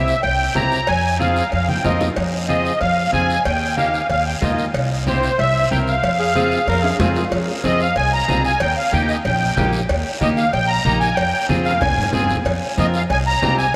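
A straight 4/4 cumbia groove at 186 BPM drives this fiery F minor piece, with raspy guiro, low-tuned congas and ringing cowbell and timbales set back in the mix, occasional drum fills, and a woody pizzicato upright bass up front. A reedy, shimmering musette accordion carries the melody through analog delay over bright, picked clean electric guitar with subtle chorus, cycling through C7, Fm and Eb. A gritty, growling tenor saxophone slips in from 6.2 to 7.3 seconds, and a huge ambient reverb leaves the whole mix dreamy and soaked.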